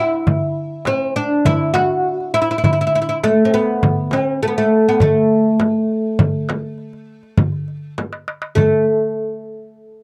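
Warm and festive, this short cut from a longer Arabic maqam ensemble piece moves in a straight four-beat feel. A fretless, plectrum-plucked oud with woody double strings carries the melody up front from the opening, joined at 0.1 seconds by a crisp, high, metal-shelled darbuka and at 0.3 seconds by a large, deep frame drum, both close and dry. A drum fill at 8.0 seconds leads into a new section, all captured in a close 1970s-style studio sound with light reverb.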